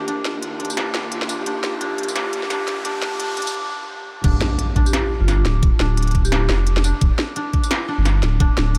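A dark, heavy half-time drum and bass excerpt at 173 BPM opens with a ringing vibraphone melody in the background, veiled muted cellos holding an Eb chord under vintage sampler grit, and woody koto arpeggios, as clanging industrial drums with crisp hats and a background riser build to a break, then at 4.2 seconds an impact lands with a knocking electronic kick and a thick, saturated sub bass up front, all within a dreamy, reverb-soaked mix.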